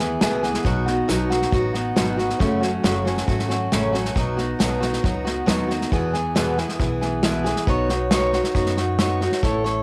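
A dark, full-bodied picked dreadnought acoustic guitar with old strings and a woody pizzicato upright bass open this heartfelt, nostalgic honky-tonk and classic country fragment, joined at 0.2 seconds by an airy, polished unplugged drum kit played with bundle sticks, with a punchy kick, medium-tuned snare and hi-hat, as the guitar and drums carry a cassette-tape grain up front over a homespun cassette recording in a small room with moderate spring reverb, moving through E, B, F#m and a closing Badd9.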